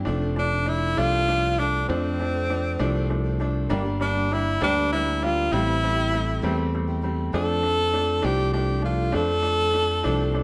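Six-eight pop ballad in F major at 66 BPM, heartfelt and swaying, played live in one room with moderate studio ambience, where a bright, up-front tenor saxophone sings the vibrato-laden melody from 0.4 s over an intimate concert grand piano with audible action noise, very quiet full-bodied arpeggios on a picked steel-string acoustic guitar, and a growly, direct fingered electric bass, moving through F6, Gm and Am7 in a short passage cut from a longer piece.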